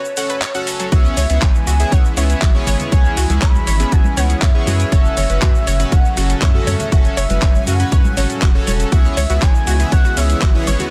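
A punchy, up-front electronic kick enters at 0.9 s with a deep, saturated sub bass and a lush, slow-blooming supersaw pad, driving this emotional, expansive progressive house piece at 120 BPM in F# minor. A smooth, vibrato-tinged synth lead with chorus and tape echo carries the melody over glossy, pumping polysynth stabs, bright detuned pluck arpeggios, a pop drum kit with metallic hats and handclaps, and ringing background congas, all in a dense, heavily limited mix that moves between F#m and C#m7.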